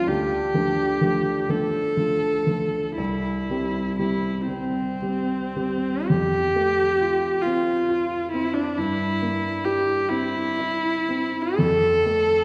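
Tender and warm, this romantic classical excerpt in F major pairs a single bowed viola with a baby grand piano, moving in a slow, rubato 6/8 at around 35-46 BPM in dotted quarters. The rich, smooth viola carries the melody with even vibrato, sitting close and up front, while the warm, worn piano supplies accompaniment reaching down into the low register. Both play throughout the 12.4 seconds, heard from further back in a scoring stage with a lush 1.7-second reverb, as the harmony settles from D minor toward a closing F major chord at 11.6 seconds.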